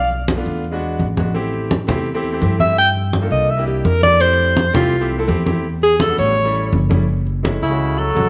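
The alto saxophone leads this driving, sultry Afro-Cuban jazz excerpt at 168 BPM in straight 4/4, its roomy jazz tone carrying vibrato and a slapback echo as it sits up front yet sounds distant, taking a solo that spans E4 to G5 and returns in earnest from 2.6 seconds. Beneath it, a woody pizzicato upright bass on steel strings runs from F#1 to G2 throughout, while thick-skinned, medium-tuned congas enter at 0.1 seconds with a small-room feel. A clear concert grand piano with deep bass and long sustain accompanies from 0.4 seconds in the G3 to A4 range. Near the close, a trombone with a metal mute slips in at 7.6 seconds as a buzzy, thin second line with a brilliant yet smooth top, moving between C#3 and F#3. The harmony moves through chords such as Bm7b5, Gm9, Fmaj7 and A7 before landing on F#m9 as a new section begins, all set in a moderate echo chamber reverb.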